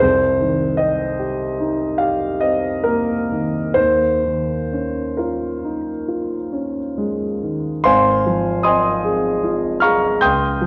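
A warm grand piano plays alone, natural and up front, drifting through a luminous, dreamy impressionist passage in 9/8 with free rubato, its range spanning from deep bass to high treble. The harmony moves from Cm7 to Eb9sus4 at 3.8 seconds before settling on Ab69 at 7.9 seconds, where the opening idea returns. A moderate scoring-stage reverb gives the piano a gentle halo, while a worn cassette-tape quality adds a warbly pitch drift to this short fragment of a longer piece.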